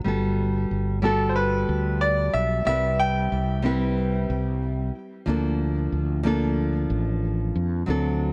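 A straight 4/4 pulse at 92 BPM carries this short sunset chillout cut from a longer piece, tuned to A4 = 435 Hz, with a sunny, warm mood. A small, dark nylon-string guitar, fingerpicked on fresh strings, plays the accompaniment up front through a low-pass filter and tape echo. Beneath it, a direct, amped fretless electric bass holds the low end from the start. At 1.0 seconds a bright grand piano takes the melody, its brilliant, short-sustained notes roughened by vintage 12-bit sampler grit and trailed by digital delay, before it falls away at 4.9 seconds. The harmony moves from Gmaj9 to Cmaj7 and then to Bbmaj7/D, all set in a moderate, lush hall reverb that gives the close-up parts a spacious glow.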